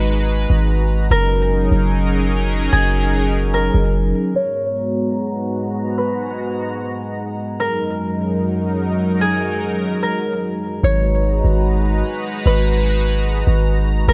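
Spacious and hazy, this half-time hip hop fragment is built on a full-bodied, chorused resonant pad that sustains G#m7 and F#69 chords throughout, moving through a filter sweep between 4.3 and 10.8 seconds. Over it, a ringing, fingerpicked concert harp carries a bright melody softened by a low-pass filter and digital delay. A deep, boomy 808-style bass sits up front, drops out after 4.1 seconds and returns at 10.8 seconds, all under a light reverb.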